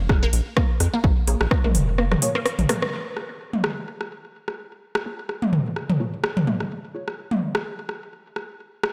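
A swung 4/4 groove in sparse, quirky minimal techno, this short cut opens with an overdriven, punchy electronic kick up front, a house kit of metallic hi-hats and rim clicks, and a minimal click kit of rim clicks and toms that runs on through the whole passage. A rubbery, hollow square bass bounces underneath with a nasal, resonant filter pluck and sidechain pumping, while a juicy, squelchy blip pluck sits on a single note through phaser, subtle chorus and tape echo. From 1.3 seconds a muted, deep dub chord stab sits in the background, detuned and mellow, coloured by phaser, ensemble chorus, cassette tape and delay. A drum fill and a band accent close the opening stretch before the harmony shifts to a minor seventh chord at 2.9 seconds. From there the click kit carries on with the chord stab, which plays under a filter sweep until it stops at 7.0 seconds, all set in a light reverb.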